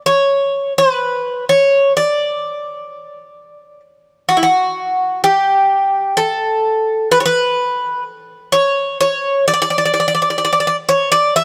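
Greek folk in 9/8 at 127 BPM in D major, this calm, warm excerpt features a solo acoustic bouzouki picked up front on its bright, metallic double strings, some of them octave-doubled, moving between E4 and E5, captured with close, detailed microphones and light reverb, its opening phrase giving way at 4.3 seconds to a second passage that runs until 11.4 seconds.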